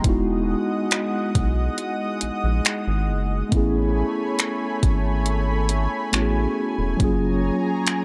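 This short cut from a longer contemporary R&B piece opens with everything sounding at once: a mellow tine electric piano, a lush unison pad, a rubbery square bass and a detuned 8-bit digital drum machine, setting a romantic, dreamy mood at a slow, straight pace in four. Up front, the drum machine delivers finger snaps, hi-hat and a thumpy kick with an overdriven, sampler-style grit that sounds re-recorded in a small room. The bass is hollow and bouncy, with a resonant filter pluck and a dark tone, and it stops at 7.5 seconds while the other parts carry on to 8.0 seconds. The electric piano sounds clean, as if heard through built-in speakers, and its accompaniment trails a dub echo, while the thick, detuned sawtooth pad holds sustained chords with a slow attack, long release, chorus, ring modulation and sidechain pumping. The harmony moves from Emaj9 to Amaj9 at 3.5 seconds and to Gbmaj9 at 7.0 seconds, all within a lightly reverberant, echo-heavy mix.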